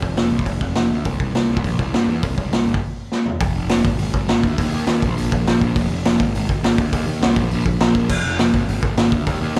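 Heard through a club PA with a touch of room reverb, this rebellious, energetic punk rock excerpt charges along at 205 BPM, with a growly, fuzz-drenched picked electric bass and a gritty garage drum kit with a punchy kick and rolled-off top both up front, pausing for a break at 2.8 seconds and a drum fill at 3.1 seconds before launching into a new section at 3.4 seconds.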